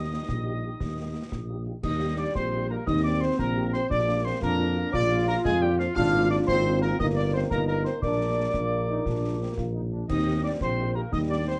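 A mellow tuba sits up front with the bass line in this festive, rousing military-style march for wind band in 6/8, cut from a longer piece. A distant trumpet section with a soft attack carries the melody while a pure, tongued piccolo with vibrato plays a second line above; trombones hold sustained chords with light vibrato, close-miked French horns add accompaniment, and a roomy solo euphonium joins in the background at 1.8 seconds. Concert snare, bass drum and dark-toned clash cymbals sound close and dry within a small room and a dark, warm production.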